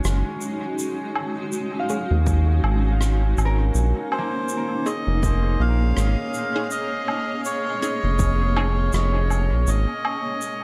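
Ambient dub with a hazy, meditative feel and a gently swung groove, cut from a longer piece: a blurred, slowly evolving granular cloud pad and a calm, glassy harmonics texture drifting in the background sit over a round, dark analog bass up front, while shaker, rim click and woodblock carry dub echo in a big acoustic room. From about 1.8 seconds a mellow, fingerpicked concert harp rings out echoing arpeggios in the background, joined by very quiet, muted filtered dub chord stabs with a phaser and a deep, overdriven electronic kick set back in the mix. At 4.1 seconds a reedy, breathy melodica takes the melody up front, its nasal tone boxed in a small room and trailed by dub echo, while the harmony, having moved from Ab7sus4 to Bbm11 at 3.7 seconds, finally settles on Absus4.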